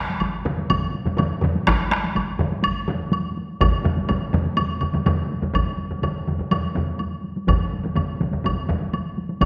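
Powerful and driving, this short Japanese traditional taiko ensemble excerpt moves at 124 BPM in a straight 4/4, with four taiko parts struck with heavy and hard sticks, three close and dry and one set in a live room, joined from 0.2 seconds by a woody, close woodblock, all inside a wet scoring-stage reverb as the music shifts into a new section at 5.6 seconds.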